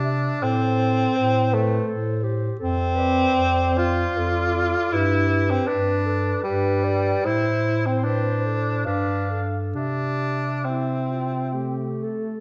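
Classical and lyrical, this serene excerpt for single-reed quartet moves in a rubato 3/4 at roughly 59-84 BPM in C major, its chords passing from A minor through D minor and G before settling on C at 9.7 seconds. A soft-attacked clarinet carries the melody and a smooth-topped alto saxophone with vibrato sings a second line, both sitting in the background, while the tenor saxophone's distant, roomy accompaniment and the punchy, close-miked bass clarinet stand up front. A moderate recital hall reverb gives the whole a dark, warm production.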